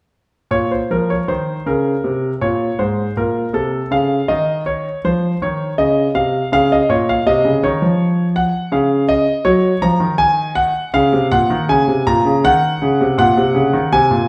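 Flowing and introspective, this classical, baroque-style suite movement for solo grand piano unfolds with a rubato feel, cut from a longer piece and heard from 0.5 to 14.3 seconds. The concert grand sounds intimate and natural, with deep bass, audible action noise and an up-front presence, spanning Ab2 to Bb5 over a Bb minor, F5/C and Gb progression. A wet stone room reverb places the listener further back in the space.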